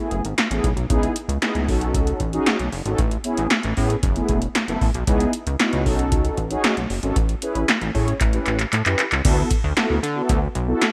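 A bright 1980s-style digital production with light reverb and digital ambience frames this funky, danceable early-eighties boogie funk in a straight 4/4. An up-front analog drum machine delivers a deep kick, a punchy snare with gated reverb, handclaps, metallic hi-hats and crash, while an up-front, glossy chorused synth bass blends pulse and sawtooth tones with a plucky filter and pulse-width movement beneath mellow, detuned synth brass that sounds round and dark, with chorus and vibrato, voicing chords like F#m11, C#m9, B9 and Amaj9. A drum fill from 8.2 to 9.2 s over an A7 chord leads into a new section on D6.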